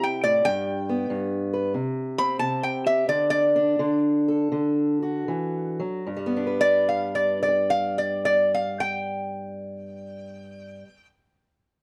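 Light reverb surrounds two up-front acoustic guitars in this short excerpt of acoustic country blues, which has a swaggering, laid-back mood and a swung 4/4 feel. A lap resonator guitar carries the melody with a steel bar and fingerpicks, its slide tone bright, metallic and nasal as it takes a solo from the start until 6.1 seconds. Beneath it, a boxy parlour-style steel-string acoustic guitar is fingerpicked in accompaniment, sitting lower in the mix. The performance slows down from 0.5 seconds through 6.1 seconds while the harmony moves through G, C5 and D. The piece returns to G as a new section begins at 6.1 seconds, and the guitars play on until the excerpt is cut off near 11.1 seconds.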